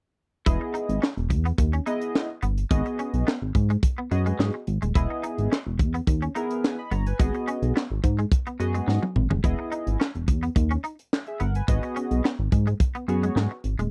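From 0.5 seconds, a slick, funky early-eighties boogie funk groove in G# minor at 107 BPM arrives all at once: a tight, high-tuned acoustic drum kit with handclaps, hi-hat and toms sits up front beside a glossy, mellow chorused synth bass with a plucky filter, while a dark, retro chorused polysynth with a filter sweep holds sustained Emaj7 and G#m7 chords and a bright, clean picked electric guitar riff adds ensemble chorus, all captured in a dry, close studio sound with a brief drum fill at 8.9 seconds.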